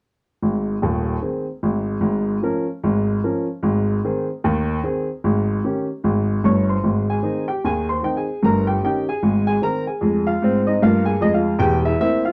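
Close, detailed miking and a light reverb put a woody, natural-sounding upright piano up front in this playful, swinging stride jazz excerpt in 4/4 with swung eighths. The solo piano ranges from deep bass notes to high upper-register figures from 0.4 seconds, moving through a second passage at 6.8 seconds that turns toward minor and dominant colours before the clip ends at 12.3 seconds.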